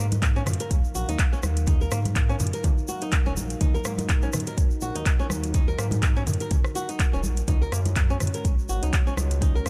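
Opening at once with a dark analog pad of moody, sustained chords, a fingerpicked flamenco guitar spinning arpeggios through a digital delay, and a smooth, saturated synth bass, this spiritual afro house excerpt pumps with sidechain compression as a deep, tape-toned electronic kick arrives up front at 0.2 seconds. Around it, an afro-pop drum kit adds handclaps, metallic hats, rim clicks and toms with a swung sixteenth-note feel, while bright congas sit in the background and a grainy tube shaker stays close and dry. The harmony rests on an Ebmadd9 chord before shifting to Dbsus4 at 7.5 seconds, all set in a studio reverb.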